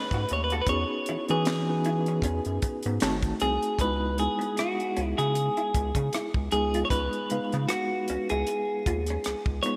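R&B and neo-soul in an introspective, sultry mood, this excerpt sets a twangy, picked clean electric guitar melody with subtle chorus up front over a reedy electric piano's fast tremolo, a dark hollow-body jazz guitar second line with ensemble chorus, a round analog bass and a tight, dry funk kit of handclaps, hi-hat, kick, rim click and high-tuned snare with gated reverb, all in a lush hall with bright 1980s-style digital production and vinyl crackle, moving from B13 and E69 into C#m9 at 3.8 seconds.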